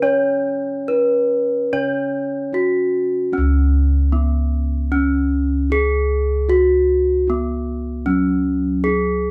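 Shimmering and serene, this Javanese gamelan excerpt in C# slendro moves at a straight 76 BPM in 4/4, with an up-front bronze metallophone ringing out the melody under a wooden mallet, a brighter horn-mallet metallophone holding a single C#4 accompaniment until 3.3 seconds, and round, mellow bossed gongs struck with padded beaters carrying the bass with a soft, beating tone, all played live in one room and bathed in a lush large-studio reverb.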